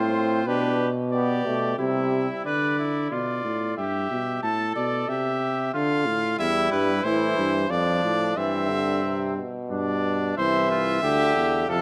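Classical imitative canzona for brass ensemble in 3/4 at 91 BPM, joyful and stately, with a recital hall's moderate reverb framing a short passage cut from a longer piece that settles into C major from 6.4 s. A punchy, up-front trumpet with light vibrato carries the melody over a second, more distant trumpet line, while a warm bass trombone anchors the bass throughout. A bright, soft-attacked trombone with a vintage tinge supplies accompaniment, dropping out at 2.4 s and returning at 6.4 s as the harmony moves through a Gsus4 to G and lands on C.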